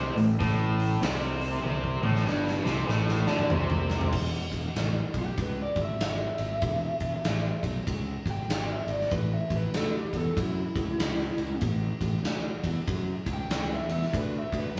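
Swaggering and gritty, this blues rock and southern rock excerpt from a longer piece rides a loose, swung groove in four. A bright, double-tracked overdriven electric guitar plays the opening riff up front, with a touch of spring reverb, before dropping out at 4.1 seconds. Beneath it, a fingered electric bass snarls with growly fuzz and overdrive, while a big acoustic rock kit of kick, snare, hi-hat, toms, crash and ride sits up front with a tight kick, a medium-tuned snare and a rolled-off top, rolling through a drum fill under the riff. From 5.2 seconds a dark, lo-fi lead guitar through a small cranked amp takes the solo, its picked, overdriven line ranging through a high register over chords moving from Gsus24 to E and then A. The whole trio sounds like a band playing live together in a stone room, with a moderate natural reverb and studio ambience.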